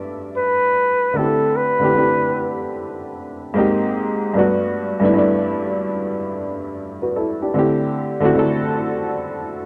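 A bucket-muted trumpet, dark and veiled with vibrato and scooped notes, plays a short jazz-style solo line from 0.4 to 2.8 seconds, softened by a low-pass filter and tape echo. Beneath it, a worn, woody, slightly detuned upright piano carries the accompaniment throughout, its cassette-tape grit and filtered tone sitting up front as the chords move from Gmaj7 through D7sus4 to a brief Abmaj7 and back. This mellow, nostalgic hip hop excerpt in G major sways at 75 BPM with a swung sixteenth-note feel, tuned slightly flat and bathed in a wet studio reverb with an overall cassette haze.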